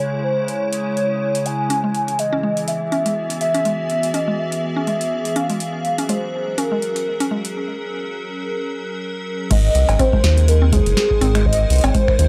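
A warbling, nostalgic lead carries the melody across this wistful, intricate IDM excerpt in Ab mixolydian at 123 BPM with a light 16th-note swing, its chorus, tape echo and 12-bit sampler grit set over an icy, crystalline pad that moves through a filter sweep. A woody, mallet-like FM pluck spins arpeggios, a bubbling stepped-filter texture murmurs in the background until 7.6 seconds, and a booming, tape-warm drum machine adds crisp snare, metallic hats, cowbell, snaps and crash. After a break, a deep, round analog bass and an electronic kick arrive together at 9.5 seconds, with the bass sitting up front in a dry, gritty, saturated hardware sound lit by a little digital ambience.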